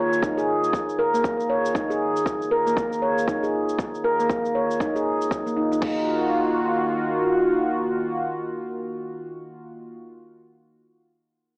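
A swung sixteenth-note groove from a deep, overdriven electronic kick and a faint electronic shaker and crash cymbal drives this spiritual afro house fragment, as a ringing stainless-steel handpan plays meditative arpeggios through a filter sweep and analog delay until 6.1 seconds, while a smooth, chorused sawtooth pad holds sustained chords with sidechain pumping through to 10.0 seconds, the whole mix steeped in wet spring reverb and the lo-fi character of a cassette home recording with an AM radio sound.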